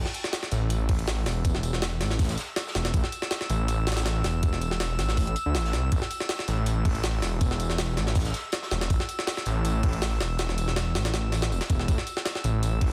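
A thick, detuned saw bass sits up front from the first moment, its beating, menacing tone sustained low beneath this short drum and bass cut, which draws on jungle at 161 BPM in 4/4 with a light swing on the sixteenths. A sampler-style jungle kit arrives at 0.1 seconds, compressed and pitched up, with a thumpy kick, a high-tuned snare, hi-hat and a gritty, tape-warm tone, placed close in a small room. Behind it, a loose acoustic indie kit plays hi-hat, a medium-tuned snare and tambourine, distant and roomy in the background, thinned by high-pass filtering. From 0.5 seconds a glassy texture of drifting overtones floats high and calm, its slow attack and long release softened by chorus and its own reverb. The dense, heavily limited master carries a vinyl crackle that gives the passage a nostalgic yet raw edge, opening on an A5 chord.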